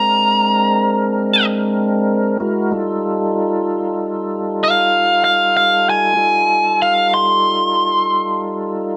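A slow 12/8 blues at 64 BPM in F mixolydian sets a gritty, laid-back mood for this brief cut from a longer piece, where a biting, overdriven lead guitar solos high and bright up front over fat tonewheel organ chords, lightly overdriven with key click, chorus vibrato and a slow rotary speaker, moving from Bb9 to F9 at 2.4 seconds, the band captured live in one stone room with moderate reverb.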